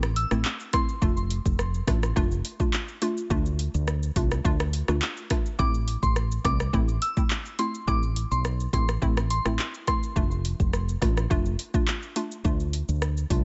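This sultry, tough dancehall fragment in A minor opens at once with an electronic drum kit, a fretless bass and a plucked synth, moving at 105 BPM in a straight 4/4. The drums sit up front with a deep kick, metallic hi-hats, handclaps, rim clicks and shaker, all carrying a produced, tape-tinged character. Beneath them, the woody fretless electric bass sounds dark, round and punchy, amped and direct in the low register. A hollow, detuned square-wave pluck with a noise layer, quick filtered attack and chorus bounces through the Am, F6 and Dm chords at a lower level. A soft, pure FM synth bell with a warbling vintage tone, chorus and digital delay glints briefly at 0.2 seconds, then returns at 5.6 seconds for a mellow high melody that lasts until 10.0 seconds. The mix is dry and dark at the top, with little reverb.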